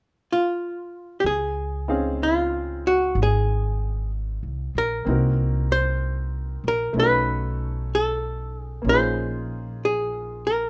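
Romantic and intimate, this jazz ballad moves at a slow 63 BPM in 4/4 with a swung eighth-note feel, set in Db major and cut from a longer piece. A clean, dark archtop guitar, miked and amplified with a hollow-body tone, carries the melody up front from 0.3 seconds, picked in a compact range between F4 and C5. Pizzicato upright bass joins at 1.2 seconds, woody and close, its steel strings anchoring the low end as the harmony settles on Dbmaj7. A clear upright piano enters at 1.9 seconds with boxy, short-sustained accompaniment sitting lower in the mix. The chords drift through Cm7b5 and Cb9 to Bbm11, and light reverb surrounds the trio.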